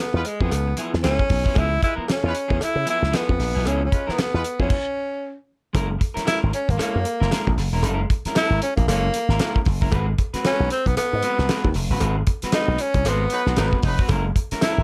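Energetic and funky, this swung funk excerpt puts a breathy, whispered tenor saxophone melody up front over a growly, punchy slap bass run through an envelope filter, a dark, slightly broken-up picked electric guitar, a dry 70s drum kit with a fat snare and tight kick, and a metallic cowbell in the background, while a distant, roomy horn section adds a second line at the start and again at 13.3 seconds, and the band drops out for a stop at 4.7 seconds before hitting shared accents from 12.0 seconds.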